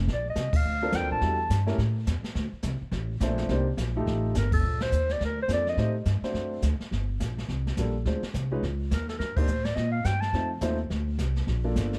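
Swinging and sophisticated, this brisk small-group jazz excerpt moves at 210 BPM in Bb major, with a woody, growly pizzicato upright bass up front and a distant, roomy brush kit with dark cymbals and a boomy kick. A mellow, breathy clarinet with light vibrato and subtone plays short solo phrases starting at 0.1, 4.4 and 8.9 seconds, while an intimate grand piano with audible action noise comps through rich extended chords. The band hits accents together, and the whole recording has a dark, lightly reverberant production.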